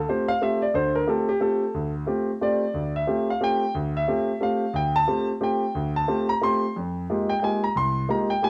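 A warm, up-front grand piano plays alone in this brief, spiritual and hypnotic jazz excerpt in a swung 3/4 at 180 BPM, spanning C2 to C6 over a G9sus4 chord that gives way to Fm11 at 6.8 seconds, all heard through moderate studio reverb and the worn, warbling pitch drift of old cassette tape.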